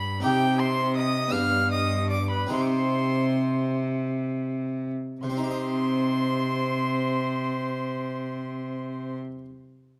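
A short excerpt from a baroque-style sonata movement in C minor opens with violin, harpsichord and cello sounding together, the oboe joining at 0.2 seconds with the melody. The mood is solemn yet flowing, in a rubato 6/8 that moves at roughly 41-58 beats per minute counted in dotted quarters, and the pace slows through the first 5.2 seconds before the music passes into a second section. The warm oboe sounds distant and roomy, carrying the tune in a classical manner, while a single bowed violin sits above it as a second line, rich, smooth and even, with vibrato and a close presence. Underneath, one bowed cello holds the bass up front with a focused tone and a smooth top, and a Flemish-style harpsichord, dry and brilliant with octave strings, fills in the continuo from the background. The harmony moves from C minor to G and back to C minor, and a moderate recital hall reverb surrounds the ensemble until the harpsichord, the last part sounding, stops at 9.5 seconds.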